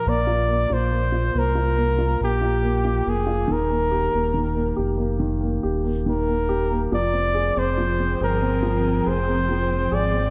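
Pop piece in a slow, straight 4/4 with an emotional, heartfelt mood, heard as a short section cut from a longer piece. A warm, close-miked flugelhorn carries the melody up front in a jazz-inflected solo voice with vibrato, sitting between G4 and D5. Beneath it, a dark, mellow baby grand piano supplies the accompaniment through a progression of Bbsus2, Eb and Fmadd9, while a deep, full sine sub bass with an added octave holds the low end with fast-attack, sustained notes placed prominently in the mix. At 7.9 seconds an ethereal, airy pad enters with slow-blooming sustained chords, its detuned unison tones shimmering with ensemble chorus, tremolo and its own reverb. The whole mix is dreamy and soaked in a moderate plate reverb that lingers for about 2.7 seconds.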